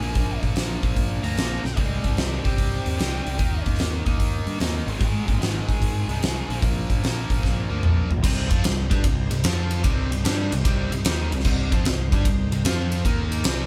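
Recorded live in one room with light reverb, this heavy, brooding blues rock and southern rock excerpt swings as a dark octave-fuzz lead guitar carries the melody until 6.6 seconds over a bright, double-tracked overdriven guitar riff, a fuzz-laden picked bass, and a huge, up-front arena drum kit with a fat snare, punchy kick and a pair of fills, while a gritty, very quiet tonewheel organ with slow rotary and third-harmonic percussion holds sustained chords from 1.8 seconds.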